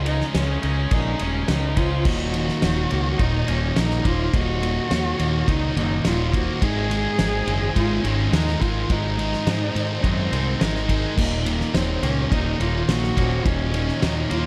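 A light small-room reverb frames this melancholic, cinematic post-rock excerpt at 105 BPM in Eb dorian, where an up-front, growling overdriven bass and a loose indie kit with a fat snare, tight kick and dark cymbals carry the chords from Dbsus2 into Ebm and Ab. A distant, veiled muted cello sings the melody with vibrato and portamento, while a twangy clean guitar and a mellow soft-mallet vibraphone spin arpeggios in the background, the three parts sharing a diffuse ambient delay. Behind them, a brilliant-toned cranked stack guitar plays a riff with overdrive and subtle chorus, and a sludgy distorted guitar adds its own riff from 2.1 s.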